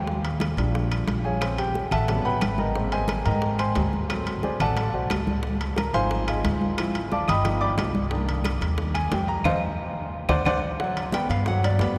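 Bathed in a long, cavernous cathedral reverb, this danceable, sophisticated Afro-Cuban jazz excerpt at 179 BPM in 4/4 puts a natural, up-front grand piano in the solo spot until 10.8 s over thumpy pizzicato upright bass, bright damped congas, tight high-tuned bongos, ringing saturated metal-shell timbales and vintage woody claves, with a band accent and drum fill leading to a small, fingerpicked nylon-string guitar that takes the closing solo, entering at 11.1 s.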